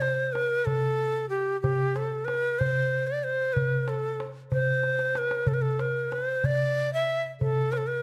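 Hypnotic and soulful, this brief cut from a longer Arabic maqam ensemble piece moves at 62 BPM in a straight 6/8 in A maqam bayati, tuned to A4 = 441 Hz. An end-blown reed-cane ney carries the melody between G4 and E5, breathy and bright with vibrato and tongued notes, while a clay-shell darbuka with a natural skin head is played with soft hands and adds a drum fill from 4.8 to 5.5 seconds. Both parts sit up front, captured by close, detailed microphones with light reverb, the drum carrying a warm, acoustic live-room character.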